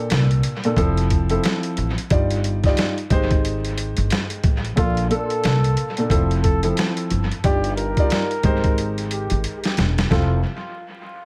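Vinyl crackle, light reverb and a small-room ambience frame this echo-heavy boom-bap hip-hop fragment, cut from a longer piece, with a confident, soulful mood and a swung sixteenth-note feel. A dark concert grand piano sits up front from the first second, mellow and smooth with deep bass and short sustain, its filtered, vintage tone carrying a chord cycle of Bbmaj7, Fmaj7, Ebmaj7/G and Abmaj7. Beneath it, a woody pizzicato upright bass with steel strings gives the low end its acoustic body. The sampler-style drum kit is pitched down, compressed and gritty, with a thumpy kick, a medium-tuned snare and hi-hat placed up front and touched with dub echo, and it plays a fill from 8.8 to 10.1 seconds. At 4.8 seconds a trumpet with a bucket mute enters as the solo voice, veiled and breathy with light vibrato and a smooth top, phrasing in a jazz style through filtering and dub echo.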